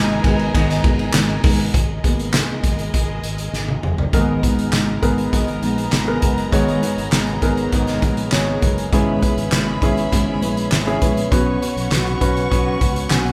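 A band playing together in one large studio room, with a moderate reverb that gives the sound depth, opens this bittersweet yet driving stretch of piano-driven pop, cut from a longer piece. A loose indie drum kit sits up front from 0.2 s, its punchy kick, fat snare and dark cymbals mixed with hi-hat, ride, toms and handclaps in a pumping room sound, and a drum fill at 3.5 s carries the music into its longest section. A fingerpicked steel-string jumbo acoustic guitar plays a dark, full-bodied riff, while a polished grand piano with long sustain provides warm, present accompaniment. Underneath, a fingered electric bass sounds bright, growly and direct in its low register. A lush symphonic string section holds sustained bowed chords with vibrato and expressive portamento, and the harmony moves from G#madd9 to E6/G# and then Bsus2.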